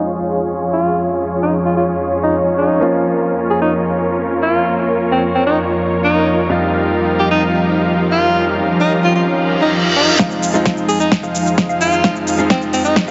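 A clear, up-front alto saxophone sings a vibrato-tinged jazz melody over a huge, thick detuned supersaw riff, background grand piano and dark bowed strings, with the piano, strings and supersaw pumping and tape echo trailing the saxophone, piano and supersaw, in this euphoric festival progressive house excerpt in F minor at 130 BPM, until a reverse cymbal and riser at 9.5 seconds lead into a build-up at 10.2 seconds where overdriven punchy drums with crisp hats and a catchy plucky square-wave arpeggio lead join, bathed in lush hall reverb.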